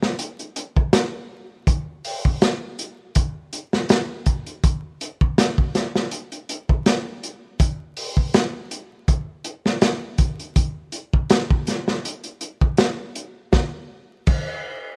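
A lightly swung 16th-note groove at 81 BPM in 4/4 drives this brooding, dark trip hop fragment, carried by a crunchy breakbeat drum kit of kick, snare, hi-hat and crash cymbal that plays from the start until 14.4 seconds. The kit sits up front with a saturated, gritty character, a tight kick, a medium-tuned snare and dusky cymbals under a rolled-off top. The dry, rough home-demo mix adds vinyl crackle and lossy compression artefacts, with the arrangement shifting at 1.7 and 13.5 seconds.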